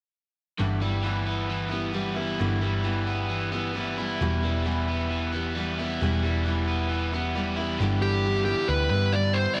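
A straight 4/4 pulse carries this hopeful, warm folk rock and heartland rock excerpt, where a picked steel-string acoustic guitar and a double-tracked, scooped, compressed overdriven electric guitar riff ride over a round, hollow-body short-scale picked bass through a move from G6 to Em and back, until a dark, smooth overdriven lead guitar steps up front with a brief melody at 8.0 seconds, set in a light digital ambience.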